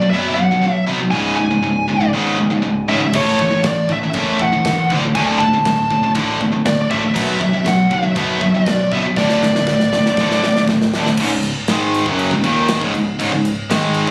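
The riff is driven by a tight, bright rhythm guitar, picked and double-tracked up front in straight 4/4, while a growly overdriven bass sits in the background, and an airy, polished drum kit with tight kick, snare, crash and china enters at 3.1 seconds. Above it, a dark high-gain lead guitar with digital delay carries the melody until 10.6 seconds, and a drum fill at 9.2 seconds leads into a new section at 11.2 seconds. This relentless, heavy metal cut from a longer piece has the compressed sound of a phone recording in a small room, with club reverb.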